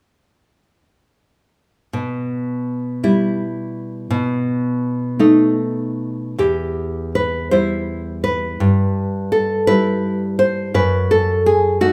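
Set in 6/8 at 55 beats per minute counted in dotted quarters, this romantic piece for solo classical guitar moves with a free, rubato feel in E minor, and the mood is melancholic and wistful. The nylon-string guitar plays alone from 1.9 s to 11.9 s, fingerpicked and sitting up front, its full-bodied acoustic tone spanning E2 to C5. The harmony opens on Em/B and moves to B7 in the first section, then a second section begins at 6.4 s with Em, Em/G and a rootless D#dim/F#. A generous large-studio reverb surrounds the instrument with a wet tail, giving the sense of a performance captured live in one room. Cut from a longer work, the passage feels like a fragment of an intimate, searching reverie.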